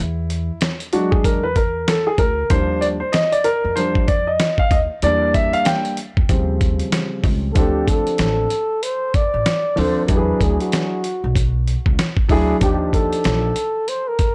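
A dark, smooth grand piano opens this cool, mellow hip hop and jazz-hop excerpt at 95 BPM with a swung solo over woody pizzicato upright bass, joined at 0.3 seconds by a gritty, compressed soul sampler-style drum kit with a thumpy kick, before a breathy, close-miked flugelhorn with scooped notes and analog delay takes the melody from 7.5 seconds over chords such as E9 and Ebmaj9, the whole recording carrying a dry, small-room hardware sound.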